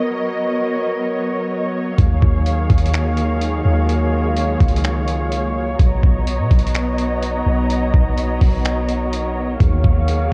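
A gritty, pitched-down sampler-style drum kit of thumpy kick, hi-hat and finger snaps enters up front at 2.0 s in this hazy, spacious half-time cloud-rap fragment, joined by a deep, round 808-style bass beneath veiled, con sordino strings that pump from the opening and a very quiet, breathy wind-like noise texture arriving at 3.4 s, set in light reverb with a cassette-tape character over Bmaj7 and Ebm11 chords.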